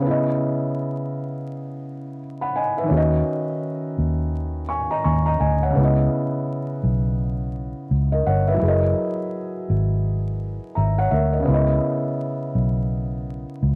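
A felt-muted upright piano opens alone, soft and intimate behind a low-pass filter and cassette tape coloring, before a round, foam-muted electric bass enters up front at 2.9 seconds in this melancholic, reflective lo-fi hip hop fragment at 84 BPM with a swung 16th feel in C# dorian, moving through C#m9, D#m7 and F#13 chords amid light studio reverb, vinyl crackle and home cassette recording character.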